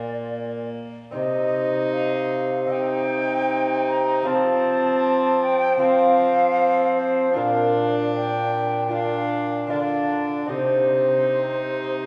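A straight, unhurried 4/4 pulse at 77 BPM carries this courtly, solemn renaissance-style consort dance in C minor, heard as a fragment cut from a longer piece. A mellow silver concert flute leads the melody from the first moment to the last, its airy, expressive tone softened by vibrato and a gentle attack. Beneath it, a fingerpicked lute with delicate double strings and a bowed viola with a reedy, gut-string, period-style character fill in the accompaniment. A bassoon with a vintage, classical-style tone sits up front as the bass, adding light vibrato of its own. The harmony moves from Bb to Cm at 1.2 seconds, then through F and Bb before returning to Cm at 10.5 seconds. A wet church reverb with a long 3.3-second decay wraps the consort in the resonance of a church or concert hall.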